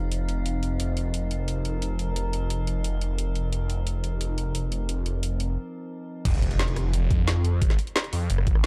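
Aggressive and futuristic, this short cut from a longer piece of dark technical drum and bass runs at 176 BPM in a straight 4/4. A swirling, thick detuned saw bass sits up front from the start, its unison sawtooth layers blended with sine and pushed through phaser and overdrive, while an eerie, metallic FM drone holds sustained chords behind it, treated with chorus and its own reverb and pumping against the sidechain until 6.2 seconds. An overdriven, layered electronic kit enters at 0.1 seconds with a woody snare, bright hi-hats, rim clicks and crash cymbal. After a brief break from 5.6 seconds, the drop lands at 6.3 seconds, bringing a knocking, overdriven electronic kick and a very quiet electronic impact. The production is dark and dry, with little reverb overall.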